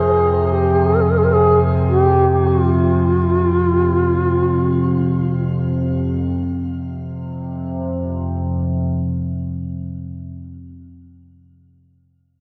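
A haunting, spacious meditative world piece in F minor and free time opens with an airy, vibrato-laden shakuhachi, its tongued notes carrying a chiff and rolled-off highs under a shimmer reverb, sitting up front over a nasal, evolving analog drone built from sawtooth and pulse-wave tones with pulse-width modulation, a moving notch, chorus and a slow attack. The shakuhachi stops at 5.5 s, leaving the mellow, sustained drone alone as a new section begins at 6.3 s and carries on to 10.3 s. This cut from a longer piece sits in a wet church reverb and has the worn, warbling pitch drift of old cassette tape.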